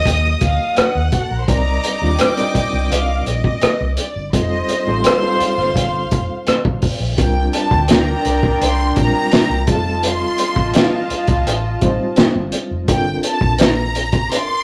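Lush and warm, this 1970s-style soul excerpt moves in a straight 4/4 feel over chords that pass from Ebm through Cm7 and F7, then on to C9sus4, F7 and a closing Gm11. A violin section carries the melody with expressive vibrato and portamento, sitting close. Beneath it, a string section plays a second line with light vibrato and a period-style gut-string tone. A worn, slightly out-of-tune reed electric piano accompanies through its built-in speakers with a fast tremolo, and from 0.1 s a dark, foam-muted fingered electric bass adds round, punchy low notes. The cloth-damped drum kit sits up front, its muffled, gritty sound pairing a fat snare and tight kick with hi-hat and rim clicks. The mix has a rough rehearsal-room character with tube saturation and moderate reverb, and the harmony turns to C9sus4 at 7.2 s.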